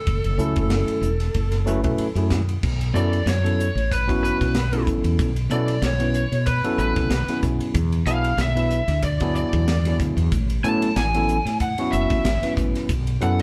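A dark, lo-fi lead guitar through a small cranked amp opens this driving, intense electric jazz fusion piece, then takes a solo from 2.6 seconds to the end, riding chords that move from F#m9 through B7sus4, E7 and A6. Beneath it, a woody, round fretless bass sits up front, a barky, gritty overdriven tine electric piano fills in the harmony, and a crisp drum kit with a high-tuned snare, punchy kick, hi-hat, ride and crash keeps a lightly swung sixteenth-note feel. The band plays live together in a stone room with moderate reverb, and the recording is cut from a longer piece.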